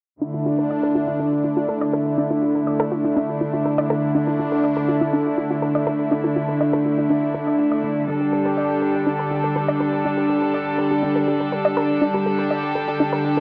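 A straight 4/4 pulse drives this dramatic techno excerpt, cut from a longer piece and running from 0.2 to 13.4 seconds. Up front, a brassy analog pad plays bold, brilliant stabs with detuned sawtooth bite, ring modulation, vibrato and a vintage warble, colored by chorus and tape echo. Beside it, a rich chamber string section holds earthy, closely captured bowed chords with light vibrato, passed through a low-pass filter. Both the pad and the strings carry a filter sweep across the whole passage. Further back, a round, nasal analog pluck spins fast-attack, short-decay arpeggios built from wave-folded sawtooth, square, sine and noise layers, softened by chorus and tape echo. The harmony moves from Dmadd9 to Gmadd9/D at 8.1 seconds, and the whole home cassette recording sits in a small, wet booth ambience.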